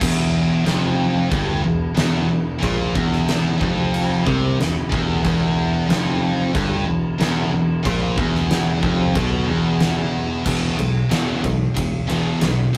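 A straight 4/4 hard rock groove drives this heavy clip, cut from a longer piece, anchored by a huge arena drum kit with a punchy kick, fat snare and bright crash and ride cymbals sitting up front. A crunchy, warm overdriven guitar and a high-gain distorted guitar play the low riff over a growly, direct picked electric bass, with the harmony moving from a minor chord to a power chord at 10.5 s. Moderate reverb and tube saturation give it a rough rehearsal-room feel.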